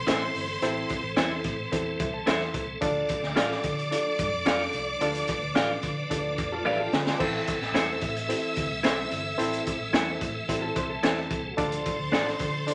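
Vinyl crackle and a rolled-off top end give this cut from a longer 1960s-style soul piece a vintage sheen, set in a moderate large studio room. A crunchy, gritty breakbeat kit sits up front with a high-tuned snare, tight kick and dark cymbals, while a muted, round and punchy fingered bass holds the low end. A barky, lightly overdriven reed electric piano carries the accompaniment and adds a fill near 1.7 seconds, as a twangy, compressed electric guitar at the edge of break-up plays stabs. A tonewheel organ with key click and a slow rotary speaker sustains piping chords, and a focused studio violin section bows a clear second line with vibrato above. A dark, clean hollow-body jazz guitar slips in with brief riffs, first at 6.5 seconds, shortly before the drums play a fill at 6.7 seconds. The mood is joyful and uptempo, moving between A minor and D minor.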